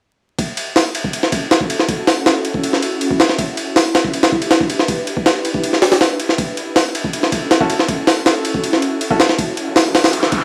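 Drum and bass in a dark, atmospheric jungle vein, this excerpt drives on a gritty, overdriven sampler-style kit with a thumpy kick and high-tuned snare up front, while an ethereal, airy pad with chorus, phaser and reverb sustains F#m7 and Em7 chords in the background, a very quiet, brilliant baby grand adds short stabs from 7.6 seconds, and an electronic riser enters at 9.6 seconds, all under vinyl crackle and light digital ambience.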